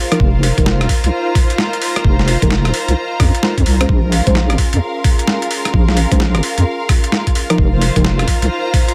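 A deep, wobbling bass with a square-and-sine tone sits up front in this moody, skippy two-step garage excerpt, alongside a thumpy, gritty, overdriven kick. A sampler-style kit of hi-hat, rim click and snare adds compressed crunch, while a mellow, warbling vintage chord stab with chorus, digital delay and a filter sweep moves between F7sus4 and Bbm9. A clear symphonic string section with light vibrato and, in the background, a soft, breathy pad, both with sidechain pumping, fill out a dry, close-sounding mix.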